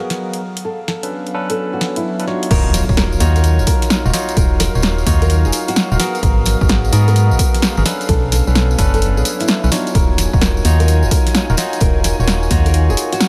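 Skippy and late-night, this two-step UK garage excerpt in Eb minor swings its sixteenths at 129 BPM, moving through Bm9, Ebm9 and Abm9 chords. It opens with a thumb-plucked nylon-string guitar melody sitting in the background with subtle chorus and tape echo, alongside barky, lightly overdriven electric piano stabs through a combo amp with delay, a smooth detuned sawtooth pad with chorus and sidechain pumping, and a very quiet, warbling lo-fi pad that adds nostalgic texture. A punchy analog drum machine supplies overdriven snare, hi-hat and crash in a small room from 0.1 seconds. At 2.5 seconds the drop arrives with a very quiet electronic impact, a dry, overdriven kick, a jingly acoustic tambourine and a hollow, organ-like FM bass that sits dark and up front with fast, decaying notes. The mix carries light reverb and a digital ambience.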